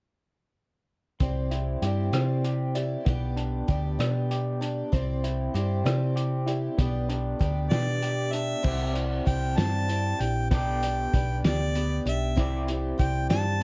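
Jangly and open-road, this folk rock and heartland rock excerpt moves in a straight 6/8, cycling between Cadd9 and G/B. A shimmering, octave-doubled twelve-string acoustic guitar and a twangy, slightly broken-up electric guitar with tremolo share the middle register. Beneath them sit a round, up-front hollow-body bass and a muffled, cloth-damped drum kit with a fat snare, tight kick and dark cymbals, all in a dry, shadowy production, until a clear, punchy harmonica takes up the melody at 7.7 seconds and carries it into the second section at 8.6 seconds.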